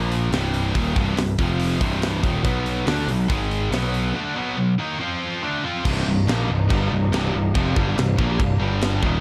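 At 141 BPM in a straight 4/4, this aggressive, epic heavy metal excerpt in C harmonic minor drives two high-gain distorted guitars through a riff, one scooped and up front, the other bright, over a growly, fuzz-laden picked electric bass and a tight metal drum kit with bright china, crash and hi-hat cymbals, a medium-tuned snare and a tight kick. At 5.8 seconds a lush, bowed symphonic string section enters in the background with focused, sustained vibrato chords, as the harmony settles on Cm before turning to G5 at 8.6 seconds. The dark, warm production sits dry, with little reverb.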